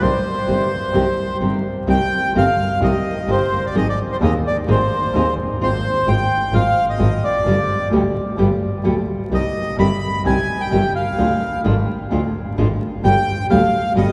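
A long cathedral reverb and vinyl crackle surround this passionate, melancholic tango fragment, recorded in a church or concert hall and set at 129 BPM in 4/4 with a rubato feel in C harmonic minor. A reedy, airy bandoneon carries the melody up front, while a full-bodied, fingerpicked nylon-string guitar gives deep classical accompaniment. A single bowed double bass adds an earthy line with light vibrato as the harmony moves from Cm through Ab, Fm/Ab and G, then back to Cm and on to Ddim before landing on G.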